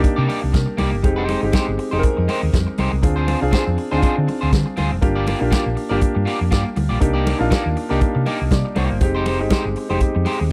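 A vintage acoustic drum kit sits up front in this driving, danceable disco cut from a longer piece, its tight kick, medium-tuned snare and hi-hat carrying a 120 BPM groove in 4/4 with a light 16th-note swing. Beneath it, a hollow-body short-scale electric bass, played with the fingers, gives a dark, round, amped tone in the low register. A clear grand piano, intimate and up front with its action noise audible, shares the accompaniment with a picked electric guitar whose warm, scooped tone is slightly broken-up at the edge of break-up. Ringing congas sit in the background, close and dry. In C minor, the harmony moves through Cm9, Fm9, Dm7b5 and Gm7 before returning to Cm9 and Fm9, all captured in a dry, close 1970s-style studio sound with little reverb.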